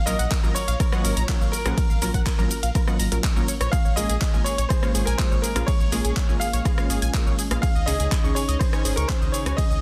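A bright grand piano with audible action noise carries the melody from the start, shadowed by a very quiet, airy lead and a tight, nasal sequenced synth arpeggio, over a round, deep analog bass, punchy unison pluck stabs, an overdriven electronic kick and a house kit of handclaps, hi-hat, ride cymbal, rim click and shaker, in this emotional, driving progressive house passage at 123 BPM in Bb minor, where a smooth analog pad slips in behind at 3.7 seconds and sidechain pumping and tape echo shape the dense, heavily limited mix.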